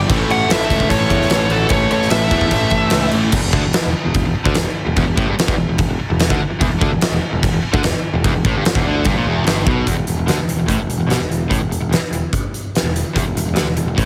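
Powerful and swaggering, this hard rock excerpt at 147 BPM drives a huge arena drum kit with a fat snare and punchy kick under a bright, growly picked bass and three stacked rhythm guitars (a cranked stack amp, a very quiet double-tracked distorted part, and a dark hollow-body semi-hollow), while a dark, smooth overdriven lead and a fuzzed octave line with slapback echo sing together from 0.3 to 3.1 seconds before the distorted guitar drops out at 9.9 seconds, all pressed into a heavily compressed, radio-ready sound with light reverb.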